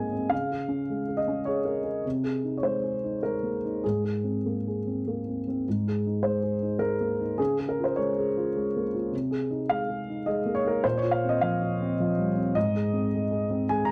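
A dark, mellow concert grand piano plays alone from the first moment, its deep bass and up-front presence giving this short neoclassical minimalist excerpt an intimate, peaceful mood in Ab major. Moving at 104 BPM in a rubato 3/4, the piano states a phrase over Db, Ab/C and Abadd9 harmonies, then repeats it from 5.7 seconds with a turn through Bbsus2 before settling back on Ab. The sound is dry and close, in the manner of a 1970s studio recording.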